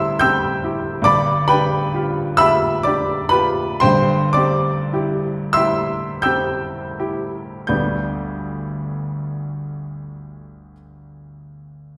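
Tender and dreamy, this fragment of a romantic classical nocturne for solo piano moves in a rubato 6/8 at 26-49 BPM, counted in dotted quarters, in G major. It gradually slows through its opening phrase, drifting from C/G to G7 and back, before settling on G as a new passage begins at 7.7 seconds. The baby grand, spanning G1 to G6, sounds clear, natural and up front, with short sustain, set in the lush reverb of a recital hall, church or concert hall.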